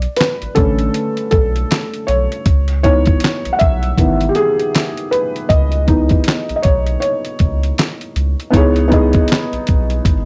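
A felt-muted upright piano, soft and intimate with audible action noise, opens this reflective, nostalgic lo-fi hip hop excerpt together with a round, deep analog bass and a dusty sampler-style soul kit of thumpy kick, fat snare, hi-hat and handclaps, swinging gently in 4/4. The piano takes a solo over Bm9 moving to C#m9 until 8.5 seconds, its mellow tone softened by cassette tape and a low-pass filter, while the bass carries tube saturation and the compressed, gritty drums sit up front. The dry hardware recording gives the whole cut a rough, close feel.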